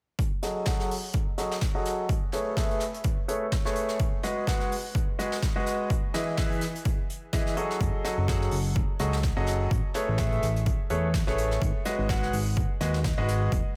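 Bittersweet yet energetic, this piano house cut moves at 126 BPM in 4/4 with a light 16th-note swing, sitting in F# dorian. A punchy analog kick sits up front from 0.2 seconds, joined by a soft brush kit whose hi-hats carry sidechain pumping and whose snare and small-room sound are thinned by high-pass filtering. A bright concert grand carries the riff from 0.4 seconds, brilliant and intimate with audible action noise, long sustain, tape echo, sidechain pumping and a low-pass filter sweep running across the passage. The harmony cycles through F#m69, Amaj9, G#m7 and Emaj7, giving the lush chords a wistful lift. At 7.8 seconds a fat, saturated analog bass enters with a detuned, wave-folded bite and a plucky, sustained tone, shaped by sidechain pumping. A light studio reverb wraps the mix, and the passage is cut from a longer piece.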